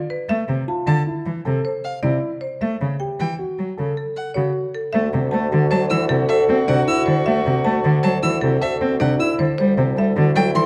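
In a straight, steady 6/4 pulse, this hypnotic, propulsive minimalist classical piece, cut from a longer work, opens with a bright, woody marimba melody played with hard mallets. It is soon joined by a rich, focused, up-front bowed cello accompaniment and by arpeggios from a dark, mellow grand piano and a close, expressive violin with a soft attack and portamento. At 4.9 s the harmony moves from Fmaj7 and A7 to D7, and a clear soprano saxophone enters with a vibrato-tinged second line while a bassoon sits on a low D in the background, arriving on Cadd9(#11)/D at 9.6 s, all within a moderate recital-hall reverb and a dark, warm production.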